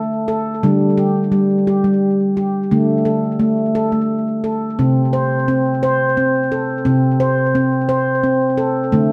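Bathed in a wet echo-chamber reverb with a small-room ambience, this short meditative, hypnotic world excerpt at 58 BPM in a straight 6/8 features a solo handpan, its ringing stainless-steel tone struck with the fingertips and placed up front with a delay, moving from D5 through Dsus4 and back to D5 before settling on Am/C at 4.8 seconds.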